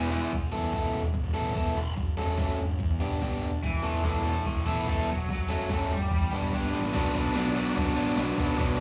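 An up-front overdriven electric guitar riff with slapback echo drives this upbeat, wistful indie rock fragment at 145 BPM, joined by a bright, crunchy second guitar riff with lush chorus from 3.6 seconds, a fuzzy fingered bass sitting in the background, a crisp 8-bit drum machine with thumpy kick and a fill before the shift to B minor at 6.9 seconds, and a very quiet, flute-like tonewheel organ holding chords through a slow rotary speaker from 7.0 seconds, all heard through a club PA with small-room ambience.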